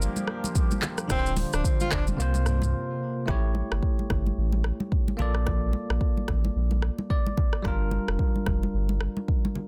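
Afrobeats at 110 BPM with a mellow, smooth swing, where an up-front electronic drum kit with a deep kick, metallic hats, handclaps, rim clicks, shaker, toms and a softly clipped snare plays alongside a full, fast-attack sub bass, bright bell-like tine electric piano chords and close, dry congas, while a moody detuned pad hangs in the background until 3.3 seconds, a breathy jazz-style tenor saxophone with scooped notes and delay slips in briefly at 1.1 seconds, and after a break the hi-hats drop out as the chords move through A7 and Bbmaj7 back to Gm7, with an electric piano fill at 6.8 seconds in a dense, heavily limited mix.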